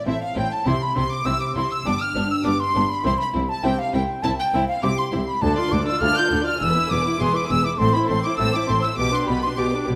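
This baroque-style concerto movement, cut from a longer piece, has a stormy, dramatic mood at 101 BPM in a straight 4/4. An airy, mellow flute with soft attacks and expressive vibrato carries the melody from the very start, doubled by a dark, close violin section bowing in the same high register. Beneath them, a delicate fingerpicked lute with doubled nylon strings sits in the background. A focused second violin section, a smooth, distant viola section and a warm, expressive cello section fill in the middle and lower lines, with the cellos and a rich double bass section anchoring the bass. The harmony moves from A minor through C, G, D minor and E before returning to A minor and touching G over B near 9.0 seconds. Moderate recital hall reverb gives the ensemble a sense of space.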